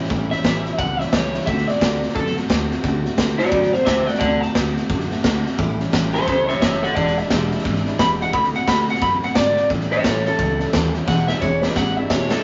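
A snug small room with a dark, rolled-off top frames this rollicking, retro rockabilly clip from a longer piece, where a twangy, slightly broken-up lead guitar with vibrato sits up front over gritty, punchy garage drums, a woody, thumpy pizzicato upright bass and a full-bodied picked jumbo acoustic guitar, all riding a swung groove through A7, D7 and E7 until a drum fill arrives at 11.1 seconds.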